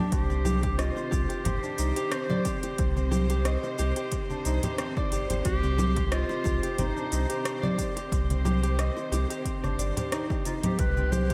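A clear, classical-style solo clarinet carries the melody through this hypnotic, earthy organic downtempo cut from a longer piece, its line echoed by analog delay over a fingerpicked concert harp whose ringing arpeggios share the same delay. Beneath them, a deep, round sine sub bass sits up front, while a punchy, layered electronic kick and an overdriven electronic kit with crisp hats, cabasa, congas and rim click, re-recorded in a small room, drive a lightly swung groove, and close, dry congas and bongos played with soft hands join in the background at 0.3 s. Distant, lush bowed strings with vibrato hold a Cmadd9 chord under sidechain pumping, and the whole mix is soaked in a dreamy hall reverb.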